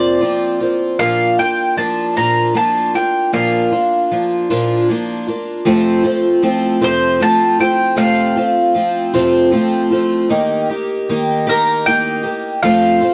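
A bright, round mandolin carries the melody up front over a shimmering, octave-doubled twelve-string acoustic guitar in this jangly, nostalgic rock fragment in a lilting 6/8, its dark production touched with light reverb as the chords move from Fsus4 and Bb to F, Eb and back to F around 12.6 seconds.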